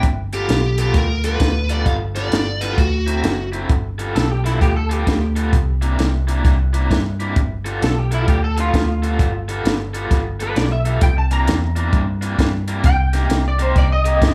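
Soulful and rollicking, this electric blues shuffle swings over a raw, lo-fi garage guitar riff with overdrive and tremolo, a round, foam-muted fingered bass and a compact cocktail drum kit with a high-tuned snare and tight kick, both sitting up front. A biting, overdriven lead guitar with slapback echo plays the melody from 0.3 to 3.5 seconds. At 3.7 seconds a clean electric guitar solo begins, and from 4.2 seconds a bright semi-hollow guitar with ensemble chorus adds a second line. The chords move around G9, C9 and D9 before landing on Cm7, all in a light small-room reverb, in this excerpt from a longer piece.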